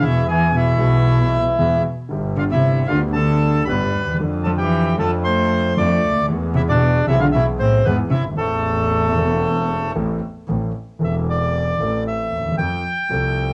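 Tango with a tense, dramatic mood and a rubato feel, this short cut from a longer piece puts a reedy, airy bandoneon up front on the melody while a dark, expressive bowed cello carries a second line with vibrato and portamento until it stops at 9.9 seconds. Beneath them, an intimate grand piano with audible action noise and deep bass supplies vintage-tinged accompaniment, and a bowed double bass, biting and distant with light vibrato, holds down the low end. The booth ambience is wet, with plate reverb on the bandoneon, cello and piano and a cassette-tape character on the cello and piano, giving the whole a home-recorded feel.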